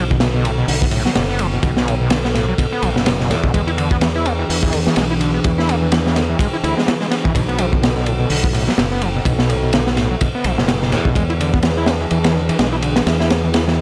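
A crunchy breakbeat kit drives this gritty, funky breaks excerpt at 126 BPM in 4/4 with a 58% swing on the sixteenths, its punchy kick, high-tuned snare and dark, rolled-off cymbals sitting saturated and up front. Beneath it a growly, bright fingered electric bass with tube saturation holds the low end in B dorian, while a screaming, squelchy sawtooth acid riff cuts through with resonant filter sweeps, distortion, chorus and tape echo over a Bm7 to E7 progression. Deep in the background, a warbling, detuned tape-like pad sustains nostalgic lo-fi chords with 12-bit sampler grit, chorus, reverb and sidechain pumping, all within a dry, gritty hardware sound.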